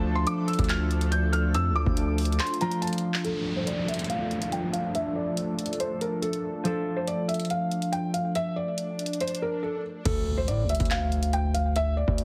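This is a hard-hitting, menacing trap cut, a short section lifted from a longer hip hop piece, riding a half-time feel in 4/4. A soft, felt-muted upright piano carries the melody up front, mellow and intimate with audible action noise, passed through a low-pass filter and delay. Beneath it, a bright, ringing, fingerpicked concert harp and a smooth, detuned sawtooth pad sustaining chords with chorus and tremolo fill in the harmony until about 10 seconds. A distorted, aggressive 808-style bass hits hard at the start, drops out for a break at 2.4 seconds, and returns at 10.1 seconds with a heavy impact. A booming analog drum machine with a deep kick, metallic hats, handclaps and crash enters just after the start and runs to the end, while electronic downlifter, swell and impact effects mark a long filter sweep in the middle. The sound is heavily compressed with a radio-like squeeze and a light touch of reverb.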